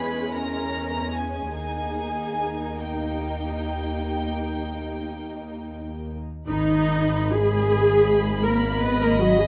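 Elegiac and solemn, this fragment of a slow romantic movement for string orchestra unfolds in a rubato 12/8, with a floating, pure violin melody high above a darker second violin line, lush woody violas with vibrato carrying the accompaniment, and a bass of cellos and up-front, rich double basses, all bowed sul tasto and caught by close, detailed microphones with little reverb as the harmony moves from C#m/E through D# to G#m at 6.5 seconds.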